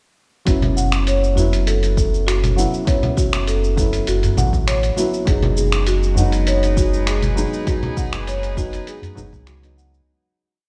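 A deep, round sine sub bass sits up front with long gliding notes, tube saturation and sidechain pumping, joined by a soft, overdriven electronic kick in this mystical, organic downtempo piece. A gritty, tape-warm sampler-style kit of closed hi-hat, cabasa, low conga and finger snaps mingles with a small background udu from 1.4 s. Meanwhile a woody soft-mallet marimba with delay loops a 12-step pattern that drifts against the bar, a felt-muted upright piano holds mellow quartal chords with syncopated pushes through pumping, a low-pass filter and delay, and a ringing bronze singing bowl hums meditatively in the background. Distant, floating chamber strings pump gently in at 5.3 s as the piece fades out from 6.9 s, wrapped in stone room reverb.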